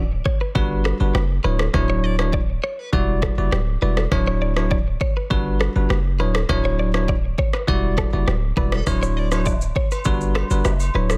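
Afrobeats at 101 BPM in D major, sunny and romantic, with a clean, picked electric guitar riff recorded direct and colored by analog chorus and tape echo, a punchy, heavy 808-style bass with a fast attack and a noise layer sitting up front, an electronic afro-pop drum kit of deep kick, rim click and shaker given an overdriven small-room grit, and a bright, bell-like tine electric piano playing lush Dmaj9, Gmaj7 and Em9 chords, before distant agogo bells and woodblock in a large room join at 8.9 seconds, all held in a dry, dense, heavily limited modern master.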